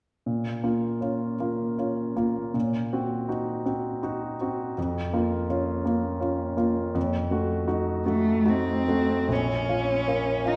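Elegiac and melancholic, this short romantic classical fragment for cello and grand piano moves in a flexible, rubato triple metre, its harmony darkening through a diminished-colored chord and a tense dominant before settling home at 9.3 seconds. The clear, intimate concert grand opens alone at 0.3 seconds with deep bass, long sustain and audible action noise. A single expressive bowed cello, rich and up front with vibrato, a soft attack and portamento, joins at 8.1 seconds, all within a resonant recital-hall reverb.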